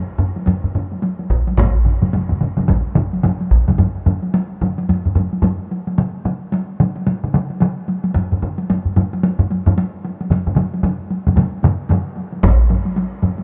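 Ceremonial and powerful, this short excerpt of Japanese traditional taiko drum ensemble music moves at 110 BPM in 4/4 with a 60% swing on the sixteenths and speeds up throughout, as four up-front acoustic taiko parts, struck with hard or heavy sticks in live and small rooms, build a dark, dry sound, the first entering at 0.2 seconds, a loud one playing only from 1.3 to 3.7 seconds and again briefly at 12.4 seconds, and another joining at 1.6 seconds through 12.1 seconds.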